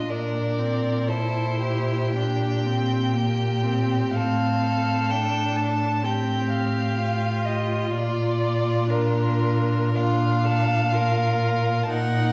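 A string quartet begins together in a tender, serene slow romantic movement played with rubato: the rich first violin carries the melody with smooth vibrato over a clear second-violin line and an intense viola, while the focused cello sits up front on the bass, all four bowed and heard from further back in a reverberant recital hall as the harmony moves from C7/Bb through F/A to Bb in this short cut from a longer piece.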